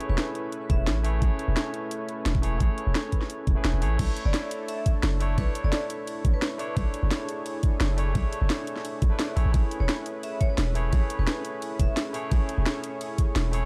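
Liquid drum and bass at 173 BPM in B dorian, soulful and melancholic, this short cut from a longer piece sits in a dark production with little reverb. A deep, sine-toned 808-style bass holds long decaying notes up front from 0.1 seconds, joined at 0.7 seconds by a knocking, overdriven electronic kick. The drum kit, also overdriven and up front, brings a cracking snare, bright hats, crash and ride cymbals. A barky tine electric piano plays clean accompaniment through a combo amp while a lush, warbling unison pad with chorus and sidechain pumping sustains chords in the background, moving from Amaj7 to a rootless Bm11 at 4.0 seconds and back to Amaj7 at 9.4 seconds. Above them a metallic, ringing vibraphone with medium hard mallets and motor vibrato adds brief melodic phrases through a digital delay, sitting low in the mix.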